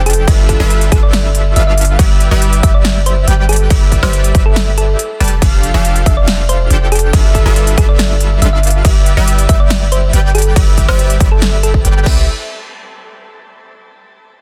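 Euphoric and lush, this future bass drop moves at 140 BPM with a half-time feel, running from 0.0 to 12.3 seconds over chords such as G13, A9sus4, F69 and G69 before settling on Cmaj7. A deep, boomy 808-style bass sits up front while a punchy, overdriven electronic kick and a big-room dance kit of crisp hi-hat, snare, crash cymbal and woodblock drive the groove. A bright, detuned supersaw stab plays the riff, a round, tine-like thumb-piano synth pluck carries the melody with chorus and dub echo, and an airy, dreamy lead adds soft arpeggios in the background, all pumping with sidechain in a dense, heavily limited digital ambience.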